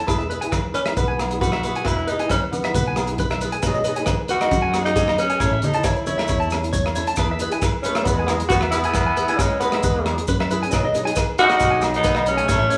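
A straight 4/4 groove at 135 BPM in E major drives this carefree highlife guitar band fragment, with a dark, smooth soul drum kit playing hi-hat, tight kick and rim click under a round, punchy fingered electric bass. A bright, twangy clean electric guitar picks compressed arpeggios up high while a boxy flamenco guitar fingerpicks accompaniment below it, finger squeaks and all. In the background, ringing agogo bells, grainy maracas and low-tuned, thick-skinned congas fill out the percussion, the congas dropping out at 7.0 seconds. Up front from 0.8 seconds, a raspy, growling tenor saxophone carries the melody in a vintage jazz style, with subtone, vibrato and scooped notes. A breathy, whispered trumpet slips in at 7.9 seconds with an intimate second line as the chords cycle through E, B6 and A. The band sounds like it is playing live together in a small room, bathed in a wet studio reverb, with a warm overall mood.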